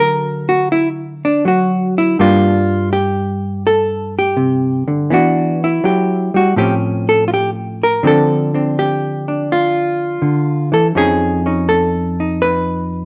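A dark, clean electric hollow-body jazz guitar, fingered and up front in light reverb, carries this warm, sophisticated solo jazz fragment on its own from 0.0 to 13.1 seconds, swinging easily in 4/4 through a sequence of D, Gm7, Em7, Aaug, Dm7 and F7alt chords.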